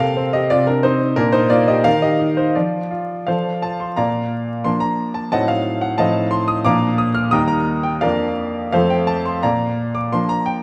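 A bright baby grand piano opens at once on an F7/C chord, playing alone in a cheerful, graceful classical-period sonatina in Bb major. The tempo sits at 88 BPM in 2/4, handled with a supple rubato, and the instrument's brilliant, intimate tone comes through up front with audible action noise that keeps it natural and close. The harmony moves from Bb and Eb through a chordless moment at 2.6 seconds before settling on F. A second section begins at 4.0 seconds, turning through an Adim7 and F7/A before returning home to Bb by 9.4 seconds, with the part ranging from Eb2 up to F6. The sound is set in a moderate recital hall reverb with a layer of vinyl crackle, and the passage is cut from a longer piece.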